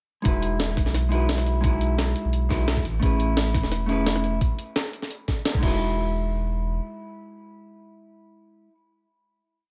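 Liquid drum and bass with a dreamy, lush mood: a short piece whose drop runs from 0.3 seconds, as Emaj9 and Amaj9 chords pass under a dark, clean hollow-body jazz guitar playing held drop-2 voicings with syncopated pushes, treated with tape echo. A gritty, compressed breakbeat kit rolls in a two-step pattern with a high-tuned snare, closed hi-hat and crash, joined by a thumpy electronic kick, while a deep, round sine sub bass glides through long sustained notes up front. A band accent at 5.5 seconds leads into a final hit at 5.8 seconds, where the guitar rings on in a light, gently reverberant room until 8.8 seconds.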